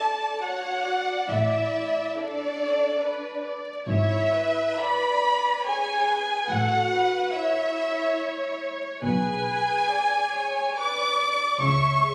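A dark, expressive violin section carries the melody up front with lush vibrato, while a second violin line and the violas fill in a rich, smooth accompaniment in this serene, slow romantic movement for string orchestra in A major, moving in a rubato 3/4 at 70 BPM. At 1.3 s the cellos and a clear, intense double bass section enter beneath them, and the harmony moves from A through E7/G# and a G#dim/B before settling toward A/C#. The strings sit in a soaking scoring-stage reverb, yet the sound comes across as a phone recording in a club-like room, with vinyl crackle and compression giving this short excerpt a worn, intimate character.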